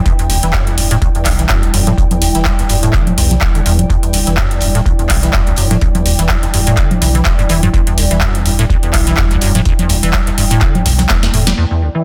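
A squelchy, resonant square-wave acid bass riff with chorus and delay runs under a filter sweep through this raw, hypnotic acid house excerpt at 125 BPM in E minor, held on an Em7 chord over a swung 16th-note groove, with a deep electronic kick, a booming analog drum machine of crisp snare, metallic hats, congas and handclaps placed up front with a short room on the snare, claps and hats, a very quiet, dry reggae drum kit with a high-tuned snare, a round, detuned analog bass pumping under sidechain, a moody, full-bodied pad of sustained chords, and a lo-fi, warbling tape-like pad set in the background with chorus and reverb, all in a dense, heavily limited mix that closes with a drum fill from 11.1 s and a band accent at 11.5 s.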